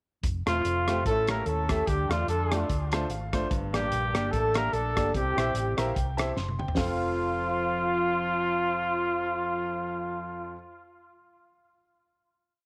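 Jubilant and hopeful, this short, uptempo gospel piece swings along in a bright praise spirit before settling onto a held final chord at 6.8 seconds. A dry, up-front soul drum kit with a fat snare and tight kick drives a two-beat praise groove, working hi-hat, rim clicks and toms, and closes its part with a fill just before it stops at 6.9 seconds. Underneath, a dark, round hollow-body electric bass walks and runs in classic gospel fashion, with slides and chromatic approach notes. A clear concert grand piano with deep bass and long sustain lays down off-beat chords in drop-2 voicings, slipping in short fills along the way. Up front, a punchy trumpet with vibrato and tape echo carries call phrases, sounding distant and roomy, while a mellow horn section doubled in octaves sits in the background with smooth hook phrases, all set in light studio reverb.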